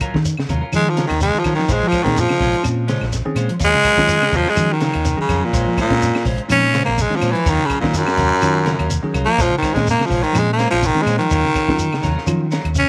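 Afrobeat excerpt at 125 BPM with a funky, hypnotic 16th-note swing, where a growling, raspy baritone saxophone with tape echo takes an up-front solo from 0.8 seconds over a round fingered electric bass, a dark, small-room cocktail drum kit, grainy shekere, woody claves, dark clean guitar arpeggios, hollow-body guitar stabs and, from 2.0 seconds, a bell-like tine electric piano, all circling between Ebm9 and Bbm9 in light studio reverb.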